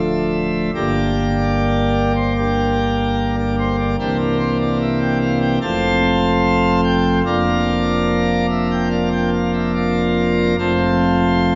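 A serene, reverent classical chorale in 4/4 for solo pipe organ, taken from a longer piece, moving with a flexible rubato through a progression from D minor to a final F chord at 10.6 seconds. The organ's full plenum, with its bright mixtures and romantic voicing, sits up front and spans deep pedal tones to high treble. A wet church reverb lingers 2.7 seconds, and the listening position lies further back in the room, which softens the top of the sound.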